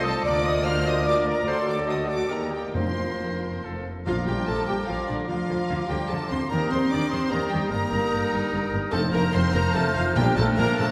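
A spirited, graceful classical-period symphonic movement in a rubato three-beat metre, cut from a longer piece, in which a distant, lush violin section carries the melody over a rich second violin section, a bright clarinet, a pure flute section and a clear oboe, while a mellow bassoon and a soft-attack viola section with portamento fill the accompaniment, a tight, close-miked French horn section holds sustained chords, a dark trumpet section adds stabs until 3.8 s, a cello section and a double bass section with vibrato anchor the bass, and articulate hard-mallet timpani strike from 2.7 s and again from 8.9 s, all set in a wet concert hall reverb.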